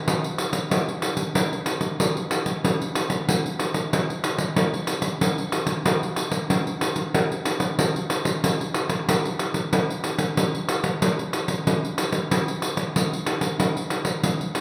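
A jingly acoustic pandeiro opens this joyful, playful samba at 93 BPM in a straight 4/4 feel, and it carries the whole excerpt alone from 0.1 s to its end at 14.6 s. The pandeiro sits up front yet has a distant, large-room quality, wrapped in a wet studio reverb. Around 13.0 s the music moves into a new section before the clip cuts off.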